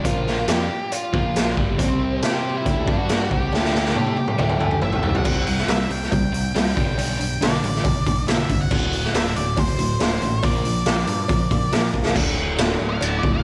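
A straight rock groove in 4/4 comes from a raw garage drum kit that sits up front, with a boomy kick, a medium-tuned snare, hi-hat, ride, crash and toms, all saturated and gritty with a rolled-off top, plus a very quiet, close and dry cowbell alongside. The mood is sunny and swaggering classic rock. A double-tracked, overdriven electric guitar plays the riff over a growling, overdriven picked bass, while a dark octave-fuzz lead guitar carries the melody with distortion and slapback echo before breaking into a short solo at the close. A very quiet, full-bodied dreadnought acoustic guitar picks an accompaniment underneath, dropping out at 5.3 seconds and returning at 8.7 seconds. At 4.0 seconds, a compressed, slightly broken-up electric slide guitar adds a brief, very quiet second line during a drum fill. The whole cut from a longer piece has a big arena sound, set in a moderate hall-like reverb.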